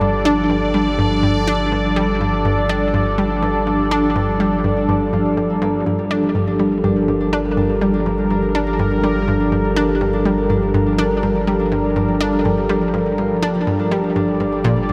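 Ambient, sequencer-driven space music in G minor at 123 BPM, hypnotic and mysterious, this excerpt rests on a single Gm7 chord as an airy, evolving sawtooth pad with chorus sits up front over mellow, ringing concert harp arpeggios through a low-pass filter and analog delay, a bright, detuned analog pluck riff with chorus and delay, and a deep sine sub bass on G1, all bathed in a huge, wet reverb.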